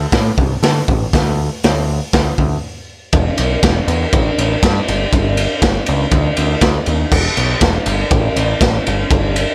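Raw and rowdy, this short garage rock excerpt at 120 BPM in a straight 4/4 pairs a growling picked electric bass with overdrive against an up-front, gritty acoustic drum kit with a boomy kick, dark cymbals and a pumping small-room sound, dry overall, with a brief break at 2.6 seconds before a new section takes over at 3.1 seconds.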